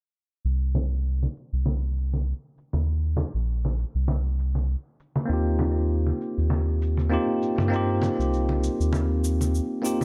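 Smooth and wistful, this sunset chillout excerpt opens with a round, deep analog bass carrying tube saturation and a filter sweep, set up front alongside hard-handed, vintage-toned congas and a faint, layered electronic cabasa. At 5.3 seconds a bell-like tine electric piano enters on an Eb69 chord, its clean, chiming tone colored by digital delay. Light reverb and a digital ambience give the mix a soft, low-passed sheen.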